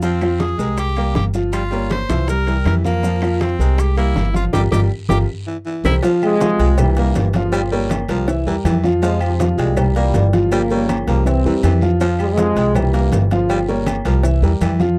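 An edgy tenor saxophone carries the melody over a growling, gritty baritone saxophone second line in this driving, passionate salsa excerpt at 161 BPM in a straight 4/4, built on F minor chords. Beneath them, a clear, woody upright piano with short sustain plays the accompaniment, and a pizzicato upright bass sits up front with a warm, steel-string tone. A dense bed of percussion fills the background: bright congas, bongos with cowbell, ringing timbales and agogo bells, woody claves, a raspy guiro and grainy maracas. A drum fill and band accent close the opening phrase, and the tenor saxophone drops out at 5.9 seconds. A mellow, tight trombone section takes over the melody at 6.2 seconds, sounding distant and roomy against the close, dry 1970s-style studio sound as the minor progression cycles on.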